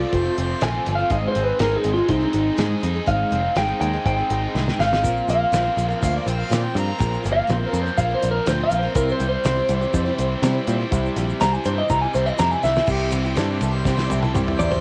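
Nostalgic and hopeful, this folk rock and heartland rock excerpt moves at 122 BPM in a straight 4/4, with a lightly broken-up electric guitar through a small old amp carrying a compressed, up-front solo coloured by subtle chorus and tape echo, while a distant, roomy harmonica adds brief second-line phrases, including a return at 12.9 s as the section changes. Beneath it, a picked steel-string acoustic guitar, a bright double-tracked overdriven stack guitar riff, a round, punchy picked bass, a reedy, slightly out-of-tune electric piano with fast tremolo and a very quiet, biting string section fill out the chords moving from F through Ab and Bbsus2 to C. A damped 70s kit with a fat snare and tight kick plays fills around 4.6 s and at the close, a grainy tube shaker joins at 5.0 s, and the whole carries the light reverb and cassette character of a home recording.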